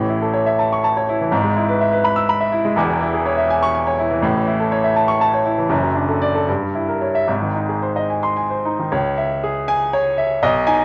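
Agitated and passionate, this short cut from a longer classical virtuoso piano study in C# minor unfolds in a rubato 6/8 at roughly 72-83 BPM, its clear, polished baby grand piano sitting up front alone across a range from E1 to E6 with light reverb, while a worn, warbling old cassette tape character lends the sound a wavering pitch drift as the harmony moves from A through a Gdim7 and G# before settling on C#m at 8.9 seconds.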